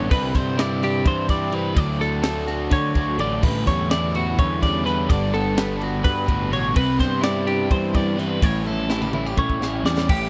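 Driving along at 252 BPM in 7/8 with a straight feel, this short math rock and midwest emo passage feels intricate and wistful, cycling through Cmaj9, Dmaj9, A9sus4, Gmaj7 and A7. A warm, compressed twelve-string electric guitar rings out its arpeggios up front, while a double-tracked crunchy overdriven guitar plays a riff and a clean electric guitar adds accompaniment in the background, both touched with spring reverb, over a dark, round fuzz bass. The crisp fusion kit, with its high-tuned snare and punchy kick, sits forward in a dry, close 1970s-style studio sound and closes with a drum fill from 8.7 to 10.1 seconds.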